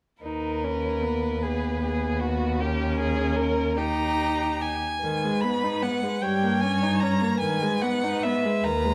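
A single bowed violin carries the melody up front with a focused, vibrato-laden tone, while a second violin sits more distant on an inner line, a viola with a smooth top supplies the accompaniment, and a rich cello anchors the bass. This slow, elegiac string quartet movement in G# minor moves at 50 BPM in a rubato 6/8 with uneven beats, its harmony shifting between G#m and D#7, with all four players sounding together from 0.2 to 8.9 seconds. Light reverb surrounds this melancholic passage, which is cut from a longer piece.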